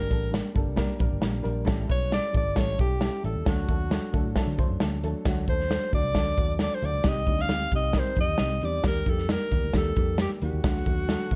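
An alto saxophone carries the melody up front, its smooth top and vibrato giving this uptempo 1960s-style soul passage a passionate, urgent voice. Beneath it, a muted, fingered electric bass sounds round and punchy through its amp, anchoring the groove in a straight 4/4 feel. A dark upright piano fills in the accompaniment with a mellow, woody, slightly detuned tone, its short sustain and audible action noise lending an intimate, worn character. The acoustic drum kit comes in at 0.1 s with hi-hat, a punchy kick and a medium-tuned snare, sitting airy and polished in a studio room. The harmony moves from Gm through A7 and D, then on to Cm and Eb before returning to D. Studio reverb wraps the whole in a dark, warm production, and the roughly 11-second passage is cut from a longer piece.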